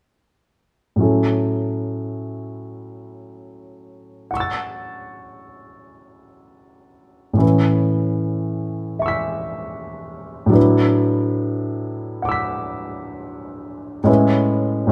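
Serene and luminous, this impressionist classical passage for solo grand piano unfolds in A major with a rubato feel, drifting between 59 and 80 BPM in 4/4. The piano enters at 1.0 s and plays until 14.9 s, ranging from A2 up to B6 and sitting clear, intimate and up front, with audible action noise lending it a natural, close presence. Its harmony glides from A6 through Aadd9 and E11/A before settling on Amaj9 at 14.1 s, the colored chords giving the music a soft, shimmering glow. Close, detailed microphones capture the instrument within a moderate recital hall reverb that adds gentle space around each chord. Cut from a longer piece, this brief passage feels like a suspended moment of calm reflection.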